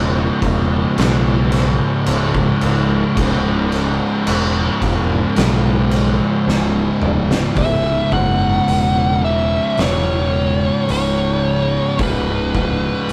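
A pair of thick fuzz guitars opens this heavy, hypnotic stoner and doom metal excerpt, picking a dark, distorted riff in C# minor at a crawling 54 BPM in straight 4/4, with one guitar set back in the background. A growling fingered electric bass plays beneath them from the start, its bright, overdriven tone coming direct and amped. The oversized low-tuned drum kit enters at 0.4 seconds, up front and saturated, with a fat snare, a boomy kick, hi-hat, crash cymbal and toms in a bright stone room. A drum fill from 6.5 to 7.6 seconds leads into the second section, where a fuzz lead guitar takes up a melody, compressed and pushed up front. Light reverb and a rough rehearsal-room recording give the whole a gritty, live feel.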